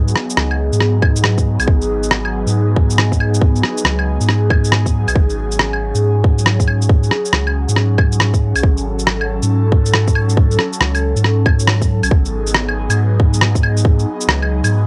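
A tight, layered electronic kick drum sits up front from 1.0 s in this nocturnal, melancholic future garage fragment, sharing small-room cassette ambience with muffled, pitched-down shaker, rim click and claves, while a round sine sub bass pumps to the sidechain and an airy, breathy pad of detuned sawtooth and noise, treated with chorus, phaser, 12-bit sampler grit, sidechain pumping and cassette tape, holds sustained chords that move from G#m7 to F#madd9/G# at 5.2 s over a swung groove, with a band accent landing at 11.7 s.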